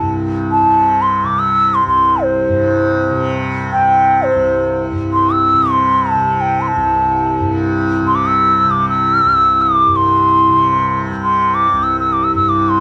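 Hindustani classical music in free time, this brief excerpt from a longer piece sets a serene, devotional mood in raga bhupali on C. A hollow, airy bansuri carries the melody throughout, close-miked and up front, its bamboo tone shaded with vibrato and tongued articulation as it moves between C5 and E6. Beneath it, a softly plucked tanpura sustains a buzzing, shimmering drone from C2 to C3, present from the first second to the last at 12.8 seconds. The bansuri sits clearly above the drone in level, keeping the melodic line in focus. Light reverb and a dark, warm production give the sound an intimate, meditative glow.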